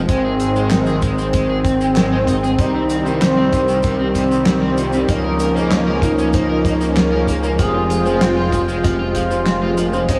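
A dreamy, reverb-soaked mix with a lush hall tail opens this cinematic, nocturnal synthwave excerpt in F minor, moving at a straight 96 BPM in 4/4. A soft, smooth supersaw holds sustained chords with vintage 12-bit grit and sidechain pumping, over a thick, detuned saw bass thickened by chorus and tube saturation. A warbling, expressive portamento lead carries the melody with vibrato, chorus and analog delay, while a bright, overdriven electric guitar plays a picked riff lower in the mix, bathed in lush chorus and tape echo. A tight, dry kick and a damped 70s kit with a fat snare, handclaps, hi-hat and shaker sit in small room ambience. From 2.6 seconds a dark, mellow grand piano adds intimate stabs in the background, its action noise audible under analog chorus and diffuse delay, as the harmony moves through Ab, Cm, Bbm/Db and Fmadd9.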